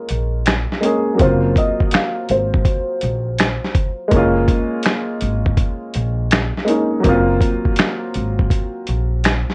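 A swung 82 BPM groove in 4/4 comes from a gritty, compressed sampler-style drum kit, with a thumpy kick, snare, hi-hat and finger snaps up front, beneath a pizzicato upright bass with a dark, gut-string tone in this hazy, reflective lo-fi hip hop excerpt. A worn, slightly detuned upright piano carries the accompaniment through Gbmaj9 and Gbmaj7#11 chords with plate reverb. A soft, felt-muted second piano plays a mellow, boxy melody with tape echo until 4.1 s, and the recording carries the warble of old cassette tape and a moderate studio reverb.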